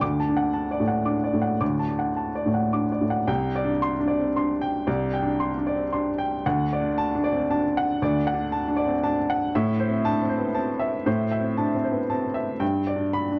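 Neoclassical minimalist piano in a rubato three-four, this intimate and wistful fragment of a longer piece features a lone upright piano spanning a broad register from the low bass to the upper treble. The instrument sits up front with a clear, woody, natural tone, short sustain and audible action noise, wrapped in light reverb and a dark production. After an opening phrase on D, a new passage begins at 3.3 seconds, moving through Csus2, D and Am before settling on G at 12.6 seconds.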